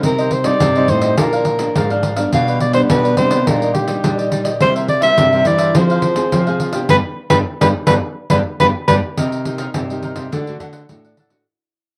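Yearning and nostalgic, this short cut from a longer samba and choro piece sets a mellow, whispered soprano saxophone up front over a crisp picked cavaquinho, a fingerpicked nylon-string guitar, a deep classical nylon-string guitar holding the bass, and a jingly pandeiro. The band hits a shared accent from 6.9 seconds, the saxophone melody stops at 8.9 seconds, and the music fades out from 9.2 seconds over a new chord change. The sound is an intimate home cassette recording in a wet small room, with plate reverb on the saxophone, cavaquinho and accompanying guitar.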